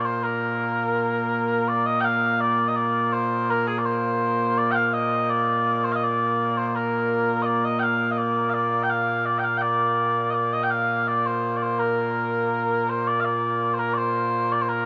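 Proud and stirring, this short cut from a longer piece of Scottish pipe music in Bb major moves at 83 BPM in a straight 2/4, with a solo set of mellow small bagpipes sounding sweet and continuous, their vibrato held up front and spanning Bb2 to G5, all bathed in a huge ambient reverb with a long 7.7-second tail.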